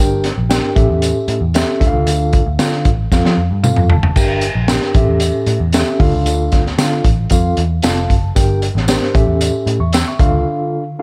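A crunchy, saturated breakbeat kit sits up front in a small room, with a punchy kick, high-tuned snare and dark, rolled-off cymbals driving this danceable, uptempo 1960s-style soul cut at 114 BPM, and it plays a drum fill at 3.1 seconds. A mellow, clean tine electric piano, also up front, comps through a Gm, A7, Dm and F progression and adds fills at 3.4 and 7.6 seconds. Beneath it, a round, foam-muted picked electric bass anchors the low end, a jingly tambourine sits in the background, and light reverb gives the excerpt a warm glow before a short break at 10.5 seconds.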